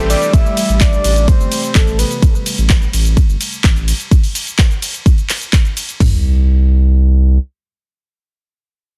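A saturated sub bass stands up front in this short progressive house fragment, its deep, thick sine tone running from the start to 7.4 seconds with tube saturation and sidechain pumping at 127 BPM in a straight 4/4. The mood is uplifting and euphoric, built over an Am7 chord through a drop that lasts until 6.0 seconds, after which the harmony falls away. A soft octave-layered synth lead carries the melody for only the opening 2.2 seconds, mellow and round with a detuned sub-octave layer, vibrato, chorus and digital delay. Beneath it, an evolving wavetable pad holds sustained chords, its bright, morphing tone shaped by phaser, built-in reverb and sidechain pumping. Two layered deep house drum kits with dark hats and small room ambience fill out the groove, one placed up front with a deep kick character and adding handclaps, ride cymbal and shaker, the other bringing kick drum and toms, both dropping out around 6 seconds. 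The dense, heavily limited master sits in a digital ambience.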